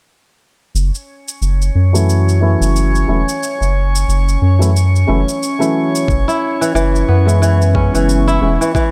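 Mystical and meditative, this short organic downtempo excerpt at 90 BPM in F# minor pentatonic opens with a round, deep analog bass pumping under a filter sweep, joined by a tape-tinged cabasa, a glassy drifting harmonics texture with chorus, and a soft felt-muted upright piano with delay, before a knocking electronic kick enters at 6.1 seconds and a crisp, ringing fingerpicked kora adds arpeggios at 6.3 seconds as the chords move from F#m7 to C#m7 in a light digital ambience.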